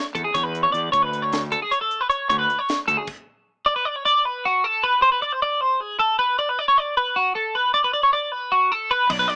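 A straight 7/8 at 309 BPM drives this wistful, playful slice of math rock and midwest emo in D lydian, where a twelve-string electric guitar, clean and compressed up front with a lush chorus, spins warm arpeggios throughout. A fuzz-overdriven fingered bass and a crisp fusion kit with a high-tuned snare, tight kick, hi-hat, ride and crash join briefly, then drop out at a stop around 3.1 seconds, leaving the guitar alone over Bm7, Amadd9 and D until they return near 9.1 seconds. The sound is a rough home demo mix with small room ambience and a small speaker character.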